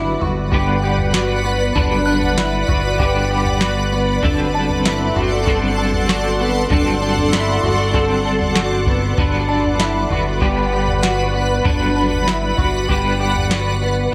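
Bathed in light reverb, this blissful, dreamy dream pop excerpt in G major moves at 97 BPM over Gmaj7, D7/G and back to Gmaj7, with a bright, ethereal pad holding chords up front through chorus and its own reverb, a clean, picked electric guitar playing accompaniment through tremolo and analog chorus, a slightly broken-up, compressed guitar picking arpeggios through ensemble chorus and tape echo, a fat, nasal sawtooth bass sitting on a low G, a soft vintage rhythm box entering at 0.2 s with deep kick, crisp snare and toms, and a crystalline FM bell glinting in the background through chorus and tape echo until 12.4 s.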